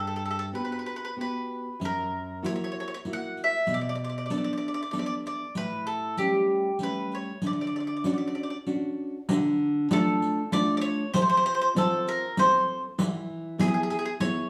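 A round, double-strung mandolin carries the picked melody up front in this sunny, romantic Italian serenade, a short passage cut from a longer folk piece in a three-beat metre. A small-sounding, fingerpicked nylon-string guitar accompanies it, also up front, and a close riq with dark jingles joins at 1.8 s, the trio playing live together in a large studio with a wet reverb. At 9.3 s the music moves into a new section as the harmony turns toward D minor, F and E.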